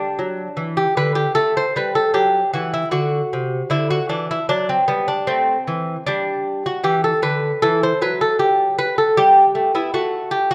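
A delicate, fingerpicked solo lute with gut and doubled strings, some sounding in octaves, sits up front and plays a flowing, grave baroque-style dance with an unhurried rubato feel, moving through G, A, D and E minor harmonies before settling back on G, all in a dark, warm production with a moderate recital-hall reverb, in a brief 10.5-second excerpt cut from a longer piece.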